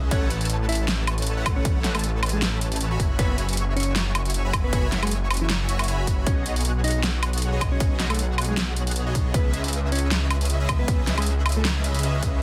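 A thick, saturated detuned saw bass sits up front with chorus and sidechain pumping, anchoring this playful, lush future bass clip at 156 BPM in a swung half-time feel, moving through A69, F#7sus4, B69 and C#m7. A punchy, tape-tinged electronic kick and a dubstep kit with a huge snare, metallic hi-hats and woodblock drive the groove in studio reverb. A fat, bold polysynth riff with ensemble chorus pumps alongside, while a dark, clean electric guitar melody drifts in the background through dub echo, all within a dense, heavily limited modern master.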